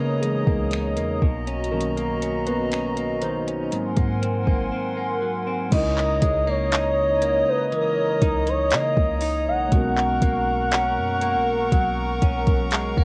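A slow, straight 4/4 pulse at 60 BPM anchors this late-night contemporary R&B excerpt in C# dorian. A soft-kicked, electronic drum kit comes in at 0.2 seconds, sitting up front with metallic hi-hats, finger snaps, handclaps and a crash cymbal, all roughened by 12-bit sampler grit and cassette tape. Beneath it, a deep, boomy 808-style bass holds the low end, while a mellow tine electric piano lays down chords moving from C#m69 through Bmaj9 and G#9. A hollow, flute-like pad with chorus sustains chords above, and a bright, twangy clean electric guitar, recorded direct, picks arpeggios through tape echo. At 5.7 seconds a smooth, gliding lead with vibrato and portamento enters to carry the melody, lending the home-cassette sound, with its light reverb, a longing feel as the harmony settles on G#m11/B.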